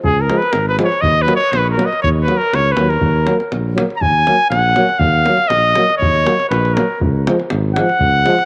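Bittersweet and fiery, this short cut from a longer Balkan brass band piece moves at 120 BPM in a straight 2/4, set in Eb minor with chords shifting from Db to Ebm and back to Db at 7.0 seconds. A clear trumpet with light vibrato and a smooth top carries the solo melody up front, while a dark, close-miked tuba holds the bass and a tight, vintage-sounding davul keeps time. From 0.3 seconds a mellow, soft-edged trombone and a warm euphonium add background accompaniment, all set in a moderate spring reverb.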